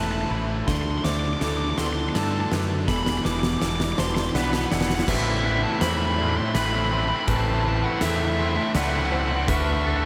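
In a straight-feel waltz time, this brooding, cathartic post-rock passage spends its first 5.1 seconds building up under a drum fill, with the oversized, low-tuned kit arriving at 0.7 seconds, punchy in the kick, fat in the snare and gritty and saturated, sitting up front in a pumping stone room with dark cymbals. A growling, overdriven fingered bass anchors the low end. A compressed distorted guitar riff churns in the background, joined at 5.1 seconds by a second, brighter and scooped distorted riff. Above them a dark, smooth lead guitar carries the melody with overdrive and delay. A very quiet twangy clean guitar and a soft, felt-muted upright piano with delay trace arpeggios, while a warbly, lo-fi, detuned tape-like pad holds nostalgic sustained chords. The whole mix is dreamy and soaked in a huge ambient reverb, moving from Amadd9 through D7sus4 and Em7, returning to Amadd9 before settling on D5.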